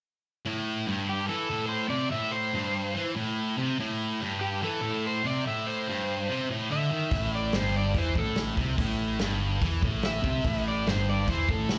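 Heard through the PA of a live club gig with a touch of club reverb, this gritty, brooding blues rock and southern rock excerpt opens at 0.5 s on a thick, bright, double-tracked fuzz guitar riff, placed up front with distortion and slapback echo, all over a single A minor chord. An overdriven slide guitar joins at 1.1 s, carrying a fingered melody that also has slapback echo. At 7.1 s a growly, overdriven fuzz bass and a vintage acoustic drum kit come in together, the kit pumping in a small room with a punchy kick, a medium-tuned snare, hi-hat and a rolled-off top.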